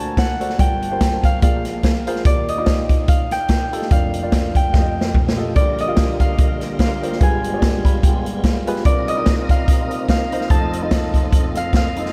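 A dreamy, reverb-soaked mix opens this uplifting, hopeful uptempo gospel excerpt in Bb major at 146 BPM, swinging in 4/4. A fingerpicked concert harp carries the ringing melody through a delay over a grand piano with a warm, deep bass, while an up-front big-band drum kit with a punchy kick and medium-tuned snare drives the swing and plays a fill at 4.7 seconds. A lightly overdriven tonewheel organ with slow rotary speaker and chorus vibrato arrives at 5.6 seconds with full sustained chords, and the piano takes a fill at 7.6 seconds as the chords move through rich extended harmony.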